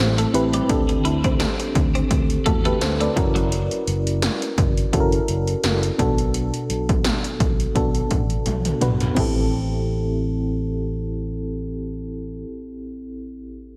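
A lush, wet hall reverb gives this short cut from a longer 1980s-style pop track a big arena sound, with a dramatic, urgent mood at 85 BPM in 4/4 and a light swing on the sixteenths in A dorian. An up-front FM electric piano with tremolo carries the accompaniment from the start, its dark, fast-attack, decaying tone carrying a faint noise layer and a slapback echo, while a fingered electric bass, round, amped and punchy, holds the low end until 12.4 seconds. A bright, clean twelve-string electric guitar plays a twangy, compressed picked riff with analog chorus and tape echo, heard only from 0.2 to 3.5 seconds. The 80s electronic pad drums sit up front with a punchy kick, metallic hi-hats, crash cymbal and toms, the snare and toms gated by reverb, and a drum fill from 8.5 seconds leads into a new section at 9.2 seconds. The chords move from Am7 through D7sus4, F#7 and Bm7 before returning to Am7, and the electric piano carries on alone to the close at 13.8 seconds.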